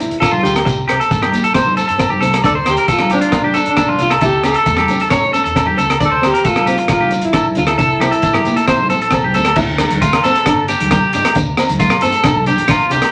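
Bittersweet and danceable, this excerpt from a longer highlife guitar band piece moves at 135 BPM in a straight 4/4, in D minor. A breathy, distant alto saxophone carries the melody with vibrato and scooped notes in a jazz style until 9.1 seconds, while a fingerpicked nylon-string guitar supplies classical-flavoured accompaniment. Up front, a twangy, slightly broken-up electric guitar plays picked arpeggios with a vibrato effect, over a round, amped fingered electric bass. The crunchy breakbeat drum kit sounds saturated and gritty with a punchy kick and dark cymbals. Behind it sit ringing agogo bells in a small room, along with a grainy shekere and soft-handed congas set in a larger, more distant space. At 9.6 seconds the music shifts to a new section featuring a clean electric guitar solo, with the harmony moving from Dsus2 through G5 and D5 to a closing Bbmaj13, all bathed in a wet club reverb.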